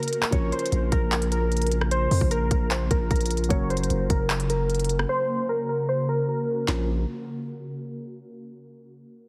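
Heavily compressed, radio-like digital ambience frames this brooding, melancholic trap fragment in Bb minor at 151 BPM with a half-time feel, where warbly, detuned lo-fi synth keys carry the melody over a dark, mellow baby grand piano, an ethereal, airy pad with phaser and built-in reverb, a trap kit with hard-clipped kick, sharp snare, crisp hats, handclaps and rim clicks, and a deep sine 808 bass entering at 0.3 seconds, as a filter sweep runs beneath the Bbm-to-Gb changes and the drums drop out from 5.1 to 6.7 seconds.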